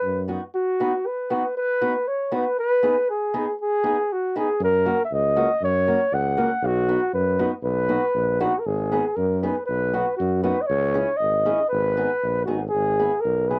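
A dark flugelhorn opens this festive, jolly alpine dance-band piece at 118 BPM in a straight 2/4, carrying the up-front melody with light vibrato and a smooth, cassette-tinged top, while a clear tuba sounds a brief bass note before dropping out until 4.6 s. A fingerpicked old ladder-braced acoustic guitar enters at 0.3 s with woody, boxy accompaniment on aged strings, moving through a B major progression before the music turns to G# minor at 8.7 s. The short, wet booth ambience gives the whole a homespun, home-taped character.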